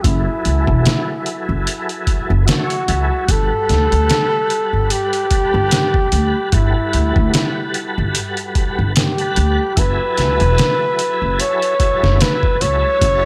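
Trip hop at 74 BPM with a swung 4/4 feel and a hypnotic, smoky mood, where a dark, veiled bucket-muted trumpet with light vibrato and tape echo carries the melody over a smooth tonewheel organ swirling through chorus vibrato, slow rotary speaker, tremolo and a filter sweep, a woody pizzicato upright bass, and a gritty, pitched-down sampler-style kit with a thumpy kick, all in light reverb as the chords move from F#m11 to Gmaj9 at 3.3 seconds and back at 9.8 seconds.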